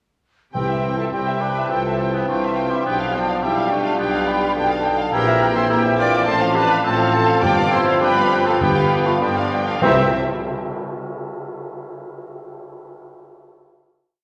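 Cheerful and graceful, this short, dramatic romantic orchestral piece in C major moves at a fast 104 BPM with uneven beats, as a warm, lush violin section carries a rocking two-note melody while a second violin section doubles the tune at the octave in the background, joined by airy flutes, a smooth cor anglais, a very quiet mellow clarinet, a mellow bassoon and a rich viola section. Softly sustained French horn chords sit over a bass of mellow tuba, rich cellos and double basses, with articulate hard-mallet timpani strokes at the start and again from 7.4 s, when dark cymbal swells and tam-tam also enter. A band accent at 9.8 s lands on the final C chord, which rings in a wet scoring-stage reverb until the cymbals and tam-tam end at 12.2 s.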